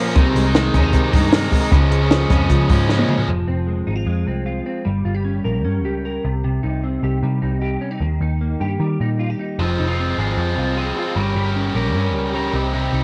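Twangy, up-front clean electric guitar arpeggios with ensemble chorus and tape echo and a biting overdriven guitar open this wistful, bittersweet jangly indie pop excerpt in F minor at 152 BPM. They are joined by a round, foam-muted vintage picked bass and a compact cocktail drum kit with a punchy kick and high-tuned snare, whose cassette-dulled sound ends with a fill from 2.9 to 3.3 seconds. After that the overdriven guitar drops out and returns at 9.6 seconds, all set in a light, small-room home cassette recording.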